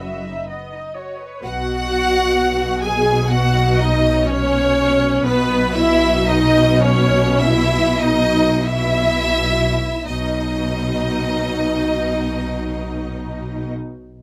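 A bright, focused violin section carries the melody up front from the first moment, over a distant second violin line, smooth violas, lush close cellos and even double basses, in this serene, tender slow romantic movement for string orchestra in B major, drifting with rubato at 40-65 BPM and slowing through its first 10.1 seconds, every section bowed with vibrato in light reverb.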